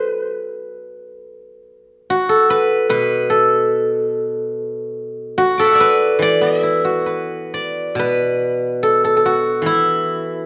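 A steel-string zither plays alone from the first moment, its bright, silvery tone ringing out up front in a piece of Chinese traditional music for solo plucked strings. Played with fingerpicks, the acoustic instrument covers a range from B2 to D6, moving through the E shang mode with an elegant, pastoral character. The tempo sits around 67-75 BPM in 2/4, but the playing is rubato, so the pulse breathes freely. A moderate recital hall reverb surrounds the zither and lets each note hang in the air. The opening section gives way to a new passage at 8.0 seconds before this short cut from a longer piece ends at 10.5 seconds.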